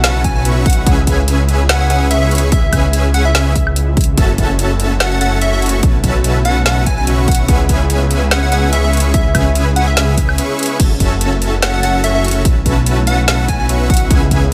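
A half-time, lightly swung 145 BPM groove in C# minor drives this dreamy, emotional future bass fragment, where a punchy layered electronic kick entering at 0.2 s and a trap kit of woody snare, metallic hats, crash and woodblock push beneath a thick, saturated detuned saw bass with chorus, a huge compressed supersaw riff with vibrato, a catchy plucky unison lead with dub echo and a filter sweep, and a very quiet, ethereal shimmering pad holding granular chords, while the bass, riff and lead pump from sidechain, light reverb colours the mix, and a brief break at 10.4 s interrupts the cycling C#m7, F#m7 and B9sus4 harmony.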